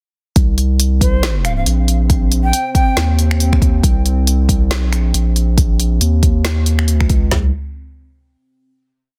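Brooding and heavy, this short deep dubstep piece settles into a swung, half-time 4/4 groove and stays on a single minor chord through one drop. A thick, saturated sub bass sits up front with chopped, sustained phrases, while an electronic kit with a deep kick, floor tom and woody snare pounds out the half-time beat in a small room. A second layered kit adds finger snaps, smooth closed hats and another snare with soft clipping, set a little further back. From 1.0 s a moody analog pad drones in the background, its detuned, dark chords colored by chorus, phaser and a vintage 12-bit sampler grit. Above it, a bright, reedy shakuhachi with airy, bamboo breath and vibrato plays short phrases through dub echo until 3.1 s. The dense, heavily limited mix stays dry, and after the drop ends at 7.3 s a final note rings out to the close.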